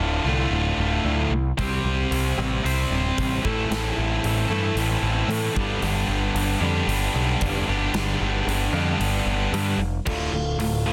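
Quiet-loud alternative rock in D dorian at 113 BPM with a half-time feel, this brooding, cathartic excerpt cut from a longer piece pairs an up-front, bright distorted guitar riff with a growling, overdriven electric bass, while a dark, boxy fingerpicked parlour acoustic guitar arpeggiates in the background. A big rock drum kit with a punchy kick, medium-tuned snare, hi-hat and crash enters at 1.6 seconds, its airy, polished sound set in a bright stone room, as the chords move from Dm through C5, Am and G before returning to Dm at 10.1 seconds. The mix is dry, dense and heavily limited in a modern master.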